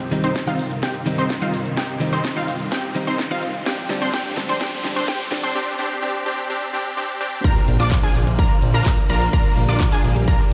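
A supersaw stab leads this festival progressive house passage at 127 BPM in straight 4/4, its bright, detuned sawtooth riff pumping against the sidechain and shaped by a filter sweep through the build-up, with tape echo trailing behind it. Around it, a lush unison pluck spins high arpeggios with tape echo, a distant bowed string section holds sustained chords with expressive vibrato, and a direct-recorded clean electric guitar adds picked, compressed accompaniment until 5.5 seconds. The house kit brings a cracking snare, handclaps, shaker, crash and overdriven hats, running a drum fill through the first 5.6 seconds, while a punchy, up-front electronic kick enters at 0.4 seconds and a very quiet riser and impact sit far beneath. The chords move from Cm to Ddim during the build, then land on Bb at the drop at 7.4 seconds, where the impact hits; shortly after, at 7.7 seconds, a fat, nasal, saturated analog bass arrives up front. 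The mix carries light reverb and a stone-room character, as if played on a big sound system in a bare room. The mood is emotional and euphoric, cut from a longer piece.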